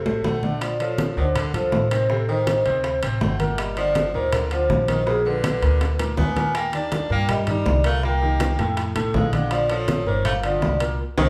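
A straight 4/4 groove at 162 BPM drives this fiery, sophisticated Afro-Cuban jazz excerpt in Bb major, cut from a longer piece. Low-tuned, damped congas played with soft hands and tight, high-tuned bongos with a vintage, band-limited sound sit in the background, alongside close, dry timbales with a ringing metal shell. Drum fills arrive at the start, around 5.4 seconds, and into a full-band accent at 11.0 seconds. Up front, a woody, thumpy pizzicato upright bass on steel strings anchors the low end. A mellow, airy vibraphone with soft mallets and slow motor vibrato carries the melody, and a bright, punchy tenor saxophone plays a forceful second line beneath it with jazz-style vibrato. A warm concert grand piano with deep bass comps through rich harmony such as Bbmaj9, D7b13 and Ebmaj7, and the whole band plays live together in a large studio with moderate reverb.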